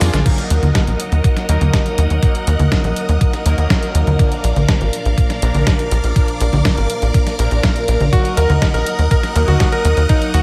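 A drum fill opens this danceable, melodramatic italo disco excerpt in a straight four, then a thumpy, tape-tinged electronic kick arrives at 0.3 seconds beside sampler-style cabasa, congas, crash, hi-hat and snare from a detuned 8-bit drum machine, under a tight, punchy, wave-folded sequencer bass sitting up front. A swirling, phased string machine holds vintage sustained chords over brassy, fat, nasal synth stabs carrying chorus, tape colour and a diffuse ambient delay, as the harmony moves from minor to major and back. A bright, clangy electric grand piano with echoing delay takes the melody again from 8.1 seconds, the whole mix dreamy and soaked in plate reverb.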